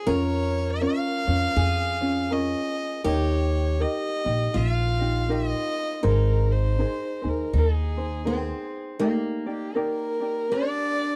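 Relaxed and languid, this Hawaiian excerpt at 80 BPM swings gently in Ab major as a soft, airy violin sings the melody up front while a boxy parlour guitar adds a picked second line, a bright thumb-plucked ukulele provides accompaniment, and a woody, thumpy upright bass plays pizzicato until 8.5 seconds, all captured in a dry, close 1970s-style studio sound before the harmony settles on Ebmaj7 at 9.0 seconds.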